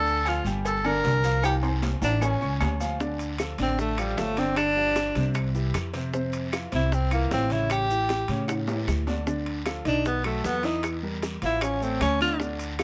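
Sultry and sophisticated, this Afro-Cuban jazz excerpt in D minor moves at 153 BPM in a straight 4/4, with a clear, close-miked tenor saxophone up front, soloing from the start to 3.0 seconds with vibrato and scooped notes over a smooth, vintage grand piano and a woody pizzicato upright bass with steel strings. Behind them sits a background bed of percussion: ringing agogo bells and timbales, round, low-tuned cowbell and bongos, band-limited claves, a raspy guiro and grainy maracas, with drum fills at 1.4 and 8.5 seconds. A moderate spring reverb adds a glow to the mix as the harmony travels from Dm through Fmaj7 and A7 toward an Aaug close.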